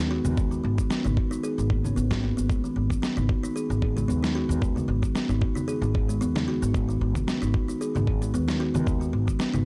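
An organic downtempo groove at 113 BPM in 4/4 sets a relaxed, lightly swung pulse, with electronic congas, shaker and snare drum entering at 0.2 seconds and an electronic kick drum joining at 0.4 seconds. The kick is thumpy and overdriven, sitting up front, while the congas, shaker and medium-tuned snare carry a gritty, sampler-style bite of their own. From the outset an upright bass plays pizzicato low lines with a dark, woody tone, holding to a single G#m7 chord in G# minor alongside a kalimba. The kalimba's arpeggios ring out mellow and hollow, with a soft fingertip pluck and a trail of analog delay. The dry, gritty recording carries cassette tape and transformer saturation, lending this mystical, earthy fragment of a longer piece a worn, close character.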